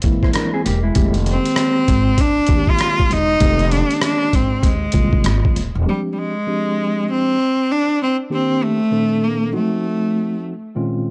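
A swung sixteenth-note groove at 98 BPM in 4/4 sets up this smoky, cool piece of jazz-hop, cut from a longer track in F dorian. Up front, a compressed, pitched-down sampler-style boom bap kit of hi-hat, thumpy kick and rim click plays beside a woody, gut-strung pizzicato upright bass with transformer saturation, and both drop away just before 6 seconds. A mellow, clean tine electric piano heard through its built-in speakers carries the chords throughout, moving from C7b13 to Fm11 and later through Fm69, Cm7 and F7b9. A dark, fingered electric guitar adds a brief second line near the start, and from 1.3 seconds a single bowed cello takes the melody, rich and nasal with vibrato and an intense, boxy edge. The whole has a dry, gritty hardware-and-cassette character set in digital ambience, with the drums re-recorded in a large room.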